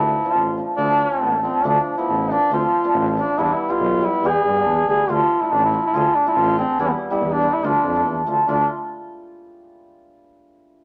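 A mellow, up-front duduk sings the melody with vibrato and scooped notes in a vintage folk style over a shimmering, ringing hammered dulcimer and a warm tuba bass with its own vibrato and smooth top, giving this festive yet soulful klezmer passage in 2/4 a wet studio sheen as it gathers speed throughout its 8.7 seconds.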